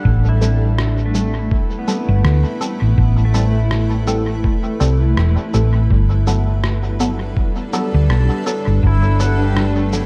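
A dark, round hollow-body bass sits up front in this meditative, deep ambient dub excerpt, moving under a swung 4/4 groove from Am7 to Gmaj9 at 5.9 seconds. A muffled, thumpy, tape-tinged kick drops out at 9.0 seconds, while pitched-down shaker and rim clicks carry dub echo, and muted sawtooth chord stabs pluck through phaser and echo. Above them, a blurred, evolving granular pad drifts in its own reverb, and a clean, twangy pedal steel guitar plays slide arpeggios through chorus and delay, all in a light digital ambience.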